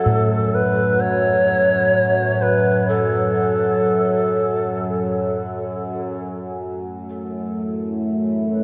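A bright, airy shakuhachi leads this dark, unsettling ambient drone. Its bamboo tone is close-miked and up front, with a crisp, chiffy attack, vibrato and a tape echo trailing its melody between A4 and C#5. Beneath it, a detuned drone of sawtooth and sine waves sits low, from F#2 to A3, its moving overtones sweeping through a resonant, chorused sustain. Gamelan-type bossed gongs play arpeggios on A2 until 5.7 seconds, their bronze sound round, mellow and beating under padded beaters in a boxy small room. At 7.0 seconds a deep, moody pad enters with sustained chords, a wave-folded, ring-modulated blend of detuned unison sawtooth, triangle and a sub octave. The music moves at 64 BPM in 4/4 on F# minor, tuned to A4 = 439 Hz, all of it set in a wet cathedral reverb with a 5.8-second decay and a warm production, and it is cut from a longer piece.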